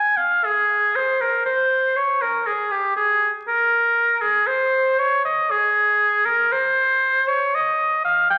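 A warm, up-front oboe carries this brief classical fragment alone, a baroque-style fantasia played with vibrato and a smooth top to its tone. The mood is flowing and introspective, moving at a slow 59 BPM in 4/4 with a rubato feel that lets the line breathe freely. The melody stays within the range from G4 to Ab5 over the roughly 8.4 seconds heard here, cut from a longer piece. A generous recital hall reverb surrounds the solo line, while the sound of a very old 78 rpm record adds a veil of vinyl crackle. The tuning sits slightly above standard pitch, at A4 = 441 Hz.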